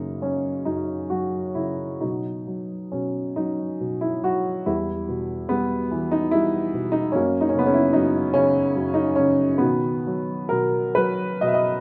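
Set up front in a moderate recital-hall reverb, this short excerpt features a dark upright piano with a mellow, woody, slightly detuned tone and long sustain. It is a tender, lyrical classical solo in B major and 6/8, played with rubato at a slow 43-50 BPM in dotted quarters, and it spans E2 to E5 across its 11.8 seconds. The harmony moves from F# through B5 and Em, returning to F# and settling on B at 9.6 seconds.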